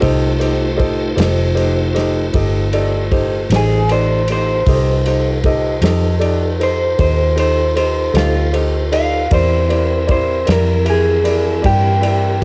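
This gritty, laid-back slow blues in 12/8 at 52 BPM (dotted quarters) opens with the full rhythm section on an F7 chord, in F mixolydian. A woody, polished upright piano carries the accompaniment with long sustain, while a tonewheel organ holds piping, scooped chords, lightly overdriven with chorus vibrato, key click and a slow rotary speaker. Underneath, a dark, foam-muted fingered electric bass sits round and punchy up front. The drums play kick, snare and ride with a tight kick, a medium-tuned snare, dark cymbals and a pumping room sound. At 3.6 s an electric guitar through a small old amp enters with the melody, slightly broken-up and lo-fi, with a warbly pitch drift. The harmony shifts to C7 at 9.3 s in this short excerpt, and the dry home-cassette recording gives the piano, organ, drums and guitar a worn tape character.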